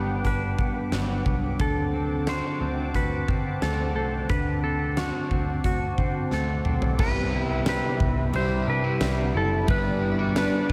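A straight 4/4 pulse carries this floating, blissful dream pop excerpt. A huge arena drum kit comes in at 0.2 s, its punchy kick, fat snare and bright cymbals up front alongside hi-hat, ride, toms and tambourine. Underneath, a vintage muted picked bass gives a dark, round, foam-muted low end, while a soft-attack sawtooth pad holds detuned, chorused chords and an electric guitar at the edge of break-up plays twangy fingered arpeggios through lush chorus and delay. A clean lap steel carries the slide melody with delay and slapback echo over chords moving from Gmaj7 to D7. After a drum fill, the harmony shifts to Cmaj7 at 7.0 s, where a crunchy overdriven guitar joins with harmonic tremolo and analog chorus, and a very quiet glassy FM synth bell adds crystalline, warbling texture from 7.7 s. A moderate hall reverb gives the whole a big arena sound.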